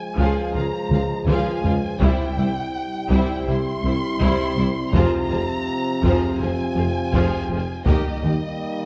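This short cut from a longer heroic, dark orchestral film score opens with a vibrato-rich violin section singing the high melody over sustained chords from a tight French horn section and a clear, vintage-toned trombone section in the background. At 0.2 seconds the rest of the orchestra joins: a second, focused violin line in the background, a distant and even viola section, a lush double bass section, a very quiet cello section and a very quiet tuba anchoring the low end. Solo taiko drums, struck with heavy sticks and sounding close and dry, enter at the same moment and play a fill from 0.9 to 2.0 seconds. The piece moves at a steady 82 BPM in 4/4 in F minor, with the harmony shifting from Db to C, then Fm and Eb. The orchestra sits in a moderate scoring-stage reverb, while a worn, warbling old cassette-tape character adds pitch drift and an aged patina to the heroic sound.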